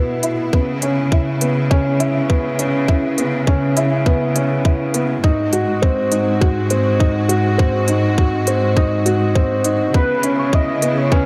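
A dark upright piano plays a riff in this cinematic, intimate piano-and-strings electronica, with a woody, slightly detuned, worn tone, audible action noise and a long sustain, placed up front and touched by tape echo. A lush bowed cello section carries the bass close and up front with smooth vibrato and a sidechain pumping effect, while a close symphonic string section sits lower in the mix, holding sustained chords with a biting, intense edge. A tight electronic kick drum and crisp electronic hi-hat, both tape-warmed and re-recorded in a small room, give a straight groove, with the kick up front. The harmony moves from B7sus4 into C#m7 and G#7 before returning to C#m7. At 9.9 s a velvety, detuned sawtooth synth lead with chorus and vibrato enters with a brief melody as this excerpt from a longer piece closes in light reverb and studio ambience.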